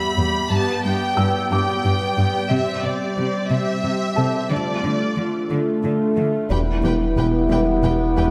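A lush, up-front studio violin section sings the melody over woody violas, a warbling, lo-fi tape-like pad with chorus, a felt-muted upright piano with audible action noise and a smooth cello section in the bass, opening a vast, futuristic hybrid orchestral and electronic film cue cut from a longer piece; a distant, roomy French horn section enters with sustained chords at 5.5 s, and from 6.5 s a second symphonic violin line, clear trombones in the background, a very quiet tuba, a bowed double bass section and a round sine sub bass deepen the low register inside a reverberant scoring-stage space.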